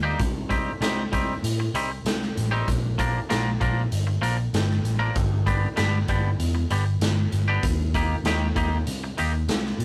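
A twangy, clean electric guitar plays up-front arpeggios over picked, amped electric bass and a saturated, gritty garage drum kit with a punchy kick and a pumping stone-room sound, in this restless, anthemic excerpt of quiet-loud alternative rock at 97 BPM, moving through Cm, Bb, G and Eb in a rough rehearsal-room recording.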